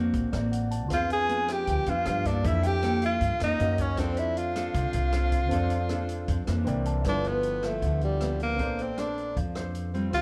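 A breathy tenor saxophone leads up front in this intimate, melancholic bossa nova excerpt, its clear tone shaped by scooped notes and light vibrato from 0.9 s, while a small flute group adds a pure second line in the background until 6.7 s. Beneath them, a fingerpicked nylon-string guitar with audible finger squeak, a woody pizzicato upright bass and an open jazz kit of hi-hat, rim click and boomy kick carry the groove, and a dark, mellow baby grand piano slips in fills at the start and again around 6.5 s. The chords drift through rich extended harmonies from D7b13 to a closing Bbmaj9, all heard through a large studio reverb and a worn, warbling cassette tape sound.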